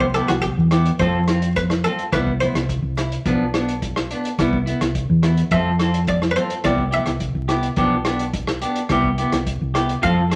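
A muted, lute-like buff-stop harpsichord takes the lead, playing solo arpeggios in French style throughout this joyful, carefree highlife guitar band passage, its dry, plucked tone sitting up front. Beneath it, a clean electric guitar supplies picked accompaniment with a warm, up-front sound. A hollow-body short-scale electric bass, played with the fingers, gives a dark, round, amped bottom that also sits close in the mix. A vintage acoustic drum kit, recorded in a small room with a tight kick and a rolled-off top, keeps a straight 4/4 feel on hi-hat, kick drum and rim click. The harmony circles back to Cmaj7 between F, Bdim and G7/B, and the whole excerpt carries a wet studio reverb and a layer of vinyl crackle.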